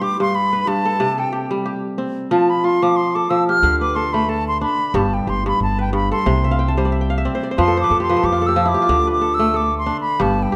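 A pure silver concert flute leads this reflective, flowing excerpt of West African traditional music, its solo sung up front with vibrato and a soft attack over bright, crisp, fingerpicked kora arpeggios that ring close by. Set at 91 BPM in 4/4 with a swung sixteenth-note feel in D dorian, the piece gains a woody, thumpy pizzicato upright bass on gut strings from 3.6 seconds, and the kora adds a fill between 6.4 and 8.9 seconds. A reverberant recital hall surrounds the ensemble.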